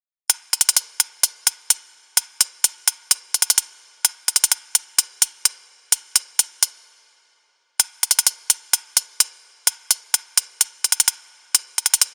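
A dry, close-sounding hip hop excerpt with a melancholic, menacing mood and a half-time feel. Crisp, produced electronic hi-hats sit up front and carry the drum part throughout the clip, from 0.3 to 12.1 seconds. A break arrives at 6.9 seconds and holds until 7.8 seconds.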